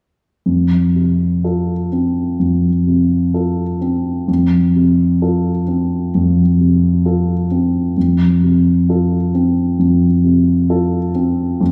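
Rubato around 65 BPM in 4/4 shapes this lyrical classical excerpt in F major, tuned to A4 = 441 Hz, where a dark, mellow, vintage-toned baby grand piano sits up front in an accompanying role from 0.5 to 11.7 seconds, spanning F2 to A4 over an F chord, while a wet recital hall reverb with a 1.8-second decay places the listener further back in the room.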